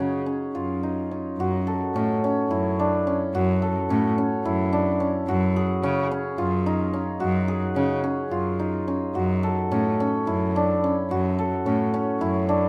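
A bright, shimmering hammered dulcimer spins ringing arpeggios up front while a single rich, bowed cello carries a smooth, vibrato-laden bass line beneath it in this hopeful yet restless contemporary chamber piece in 7/8 at 216 BPM (eighths), cut from a longer work and heard through close, detailed microphones with light reverb as its harmony alternates between Gbsus2 and Dmaj7/F#.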